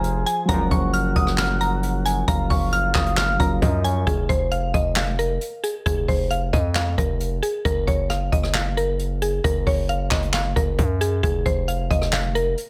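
A brooding, hard-hitting trap cut in F phrygian opens at 134 BPM in a half-time feel, with a woody, mallet-like FM pluck carrying the melody over a jazz brush drum kit and a distorted 808-style bass. The acoustic kit sits up front in a natural studio-room sound, its boomy kick, medium-tuned snare, hi-hat, rim click and handclaps played with brushes, while the saturated, aggressive 808 hits with a fast attack and a noise layer before decaying. For the first 4.1 seconds, soft electric-piano-like keys with a filter sweep and chorus fill out the harmony, joined by a round, octave-layered lead with a sub octave, vibrato and delay as a second line, and a vintage, classical-style brass section briefly stabs in the background at 0.5 seconds on a Gbmaj7. From 4.1 seconds the pluck, bass and drums carry on alone through chords moving from Fmadd11 to Gb and Fsus4, the pluck's chorus and delay giving its mellow tone some shimmer. 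Light reverb and a small-room ambience frame this dark, heavy excerpt from a longer piece.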